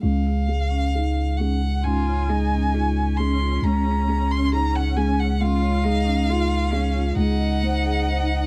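A slow, rubato 4/4 pulse at 67 BPM carries this tender, intimate neoclassical fragment in Db major, anchored by a punchy, deep sine sub bass up front and a felt-muted upright piano whose soft, boxy, thick-felt tone fills the accompaniment from 0.0 seconds. Above it, a single bowed violin sings the melody with vibrato and portamento, sounding rich yet distant, while a dark vibraphone struck with medium mallets, motor off, rings out metallic arpeggios through tape echo in the background until 8.0 seconds. A smooth, even cello enters at 1.8 seconds with a second line, and the harmony moves from Dbadd9 to Ab/Db near the close, all captured with close, detailed microphones and little reverb.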